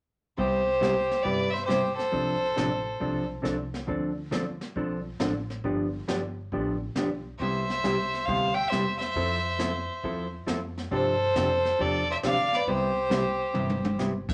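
Western swing with a country heart, this cheerful, down-home excerpt moves at 137 BPM in 4/4 with a swung eighth-note feel in C major. Two bowed fiddles carry the tune, the lead one clear, biting and intense with light vibrato up front, the second line nasal and earthy beneath it; both play from 0.4 to 3.2 seconds, drop out, then return at 7.4 seconds. In their absence the dark, clean hollow-body electric guitar, fingered and up front, carries on over jazzy changes that move from Cmaj7 through F6 and G7, later reaching Fmaj7 and G9sus4 before settling on Cmaj7. A pizzicato upright bass with gut strings gives a woody, thumpy floor, while a brushed jazz kit with dark cymbals, a high-tuned snare and a boomy kick keeps time and plays a short fill at 13.6 seconds. The whole band sits in a wet club reverb.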